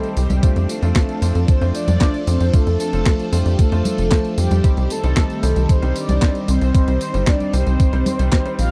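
A danceable, bittersweet italo disco excerpt in C dorian at 114 BPM opens with a round, detuned synth brass melody treated with chorus, cassette tape and tape echo, set over swirling, warbling string machine chords with ensemble chorus and phaser, present grand piano stabs, and a clean 12-bit drum machine whose overdriven congas, handclaps, hi-hat, medium-tuned snare and tambourine sound re-recorded in a small room. A tight, nasal sequencer bass with tube saturation enters up front at 0.2 seconds, and a thumpy, overdriven electronic kick joins at 0.4 seconds on an F6 chord, with the harmony moving to Cm at 4.6 seconds. The dry, close 1970s-style studio sound keeps the punchy low end forward.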